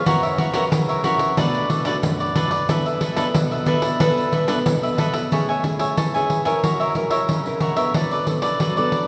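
A straight 4/4 groove at 91 BPM drives this joyful, sunny samba and choro passage in A major, cut from a longer piece. The pandeiro comes in at 0.1 seconds, jingly and close, its dry, hard-handed strokes sitting up front. The cavaquinho also sits up front, playing crisp, picked accompaniment in its upper register, while the nylon-string guitar fills in below with classical fingerpicking, complete with an audible finger squeak. The harmony moves through F#7, Bm7 and E7sus4 before a new section at 5.3 seconds opens on Amaj7 and returns through F#7 to Bm7/F#. A long, wet church reverb surrounds the recording, giving the acoustic trio the resonant air of a large hall.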